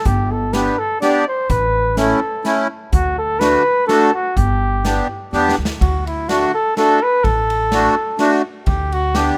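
A rough home demo mix in a small room carries this festive, bouncy alpine folk dance in triple time, cut from a longer piece. A warm, roomy flugelhorn sings the melody up front in a classical style, beside a reedy, close-miked accordion with slow beating and a dry, full tone, while a woody pizzicato upright bass on steel strings anchors the low end. The airy street-band drum kit adds a boomy kick, medium-tuned snare, hi-hat and dark ride cymbal, and its fill at 5.3 seconds leads into a new section at 5.8 seconds.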